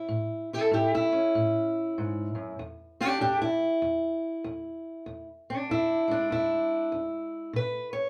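A moderate studio reverb gives this short live-room clip a natural, close feel. It's soulful, laid-back acoustic country blues at 97 BPM in E mixolydian, with a swung 4/4 lilt. A single fingerpicked steel-string parlour guitar sits up front, its old strings giving a dark, woody tone as it moves from A to E at 2.6 seconds, and the chords fall away at 7.5 seconds.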